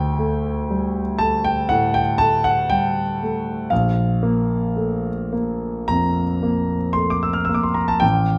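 A warm grand piano, intimate and up front with audible action noise and long sustain, carries this serene, dreamy romantic nocturne excerpt in a rubato 4/4, ranging from A1 to F6 with notes on D5 at 0.0 seconds and Bb5 at 3.7 seconds, set in a moderate recital hall reverb captured through close, detailed microphones.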